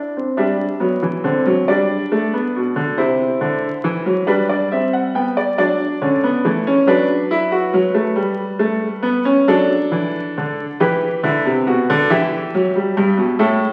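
Classical baroque-style fugue in three parts for solo grand piano, serious and solemn in mood, moving in 6/8 metre with a straight feel. The concert grand sounds clear and open, with a deep bass and an up-front presence, spanning from G2 to G5 across the 13.7-second excerpt. The harmony settles on G before moving through C, D and D/F#, returning to G and then D, and the opening section gives way at 10.8 seconds to a second section that turns to E minor. A wet recital hall reverb surrounds the instrument, while the surface of a very old 78 rpm record adds vinyl crackle and an aged patina. Cut from a longer piece, it captures the contrapuntal gravity of the form in a brief, stately span.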